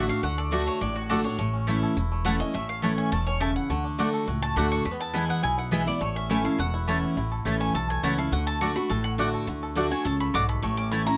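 Close, detailed microphones and light reverb frame this lively, virtuosic bluegrass piece, cut from a longer work, at a brisk 208 BPM in straight 4/4, moving through D, A and E chords. A woody, double-strung mandolin takes the solo throughout, while a twangy, fingerpicked banjo adds its own melody line and a second mandolin punches in with stabs. A full-bodied, picked dreadnought guitar sits up front in the accompaniment, and a growly pizzicato upright bass anchors the low end.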